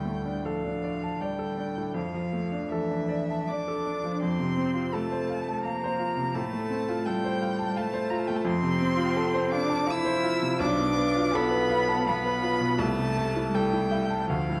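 A slow, solemn and yearning classical piano trio movement in 3/4 at 74-88 BPM with a rubato feel opens with all three players together: a clear, intimate baby grand piano sits up front with audible action noise, carrying the accompaniment beneath a smooth, distant bowed violin melody with vibrato and a rich, focused bowed cello second line, all bathed in a wet recital hall reverb within a dark, warm production as the harmony settles into A minor from 8.5 s in this fragment of a longer piece.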